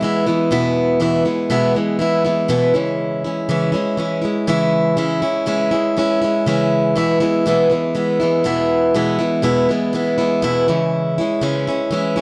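Rock with a nostalgic, open-road mood, carried by a lone picked, plugged-in acoustic archtop guitar with a woody, boxy tone and old strings, sitting up front with slapback echo as it moves between E and C#m over about 12.2 seconds in a dark production bathed in a moderate plate reverb.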